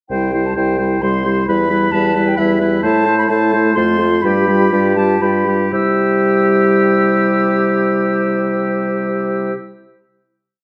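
A brief, graceful and spirited classical-period piece for wind quintet in a quick triple metre. An airy silver flute carries the melody with a crisp attack and straight tone, over an oboe second line with light vibrato, repeated notes and sustained chords from clarinet and a dark, distant French horn, and a mellow bassoon placing the bass on the beats from up front. The tempo slows from 2.2 to 5.7 seconds before the quintet settles on a final chord, all set in a wet stone room.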